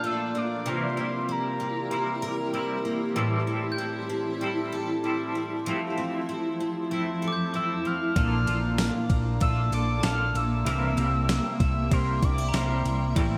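Bathed in a huge ambient reverb, this ethereal, haunting dream pop excerpt at 96 BPM layers a shimmering, chorused twelve-string acoustic guitar picking arpeggios, a bright, twangy clean electric guitar with tremolo, a cloudy granular pad holding evolving chords and a faint bell-like glockenspiel under a round octave-layered synth lead that sings from 0.0 to 2.9 seconds and returns at 7.6, before a punchy, dark electric bass and an overdriven, thumpy 8-bit drum machine with kick, snare, ride and tambourine join up front at 8.2 seconds over chords moving from Bbmaj7 through C7, Am7 and Fmaj7.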